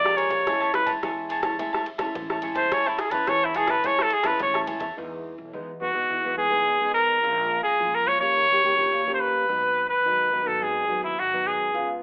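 A clear, vintage-toned trumpet opens this festive, sunny samba and choro fragment with a jazz-style solo, its vibrato sitting up front over crisp, bright picked cavaquinho, fingerpicked nylon-string guitar, pizzicato upright bass and a punchy analog drum machine playing kick, ride cymbal and rim click. The tempo is a straight 106 BPM in 4/4, starting in A major on an Amaj7 chord. By 5.0 s the cavaquinho and drum machine have dropped out, and the music moves into E major on Emaj7, passing through A#m7, D#7 and G#m7. From there the trumpet carries the melody over the deep classical guitar, whose finger squeaks are audible, and the woody, growly bass tucked in the background. A moderate studio reverb and a telephone-like sound color the whole recording, and the trumpet ends at 11.9 s as the piece cuts off.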